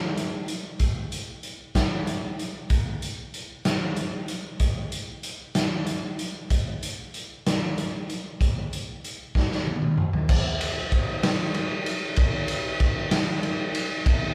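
Rock in a dark, angsty 6/8, this excerpt from a longer piece features a raw, gritty garage drum kit played up front in a dry room, with crash, ride, hi-hat, toms, a medium-tuned snare and a punchy kick, and a fill at 9.4 seconds leads into a new section at 10.3 seconds.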